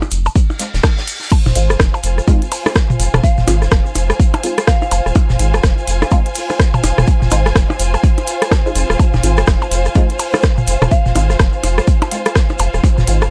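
A swung 125 BPM minimal techno groove in F minor drives this cool, hypnotic excerpt, built on a punchy, up-front electronic kick, an overdriven techno kit of smooth hats, crash and rim click, an overdriven click kit of blips, rim clicks and toms with tape echo, a mellow, grainy tube shaker and a warm acoustic soul kit of hi-hat and snare sitting in the background. A deep, thick saturated sub bass pumps against the kick, while a muted, detuned dub chord stab with phaser, chorus and tape echo plucks behind it on an Fm7 colour. After a reverse cymbal rises into the drop at 1.3 seconds, a dark, lush bowed string section with vibrato enters, and a soft, pure FM bell touches F5 at 3.2 seconds and again near 10.9 seconds.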